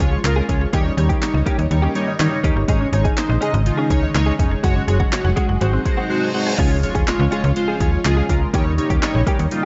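A dark, warm production with light digital ambience and a top end that stops at 7.9 kHz frames this euphoric, summery dance-pop excerpt at 123 BPM in 4/4, set in D-flat major. Up front, a punchy, dry analog drum machine pushed into overdrive drives kick, snare, hi-hat, handclaps and crash, while a snappy FM bass with a metallic attack pumps against the sidechain. A glossy, retro chorused polysynth carries the accompaniment with pulse-width modulation, a filter sweep and phaser, joined by a picked, compressed clean electric guitar riff recorded direct through analog chorus and a very quiet, swirling string machine holding sustained chords. In the background, a woody, mallet-like synth pluck traces arpeggios through tape echo until 6.6 seconds. A reverse cymbal rises from 5.9 seconds into a brief silent gap, and an electronic impact lands at 6.6 seconds to open the next section. The harmony moves through Db, Eb7, Absus4, Gbsus2 and Ab7 before returning to Db and Eb7.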